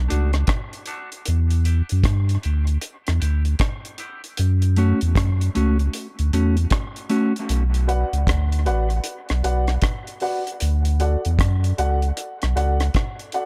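Heard through a light, small-room ambience in an echo-heavy mix, this spacious, deep dub reggae excerpt moves at 77 BPM in 4/4 with a swung sixteenth-note feel, centred on B minor. A round, sine-like sub bass sits up front from the opening, sustained and quick in its attack, while an acoustic reggae drum kit, dry and tight in the kick with a rolled-off top, carries hi-hat, kick and rim clicks close to the listener. During the opening break, a dark, clean electric guitar played with the fingers adds accompaniment through a high-pass filter and dub echo, with a filter sweep on it until 4.4 seconds. The guitar drops out at 7.3 seconds, and a woody, boxy upright piano then brings mellow stabs from 7.9 seconds, also filtered and echoed. The harmony moves from D through Em and F#m to Bm before returning to D.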